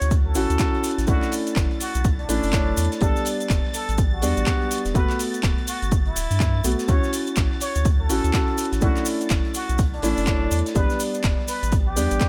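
A dry, close-sounding deep house excerpt at 124 BPM in B minor, hypnotic and smooth with a swung 16th feel, where an overdriven electronic kick sits up front beside a felt-muted upright piano playing mellow, pumping stabs with delay, a round, nasal analog bass also pumping under the chords from Dmaj7 through Bm11, A9sus4 and Gmaj9, a plunger-muted jazz trumpet melody with wah-wah scooped notes and delay, a metallic-hatted deep house kit with handclaps, a very faint big-room rock kit, a grainy bright cabasa, and a silky, warbling string machine entering at 0.2 seconds in the background.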